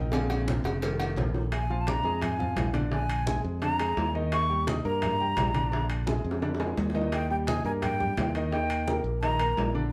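Heard from further back in a wet studio room, this lively, sophisticated Afro-Cuban jazz excerpt opens with an intimate concert grand piano, its action noise audible, alongside a growly, up-front fingered electric bass and a drum fill. At 1.6 seconds an airy metal jazz flute enters with vibrato, carrying the tongued melody. Beneath it, low-tuned congas sit in the background with tight, high-tuned cowbell and bongos and ringing, saturated agogo bells and timbales, and a second drum fill arrives at 6.1 seconds.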